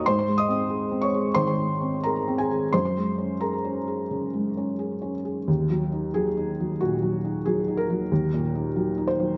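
A felt-muted upright piano plays alone, soft and mellow and up front, with a slapback echo, spanning a range from Eb2 to Eb6 in this intimate, wistful neoclassical minimalist excerpt in Eb dorian at 90 BPM with a rubato, uneven pulse, moving from Ab through Gbadd9 to Ebm at 5.5 seconds within a dark production touched by light reverb.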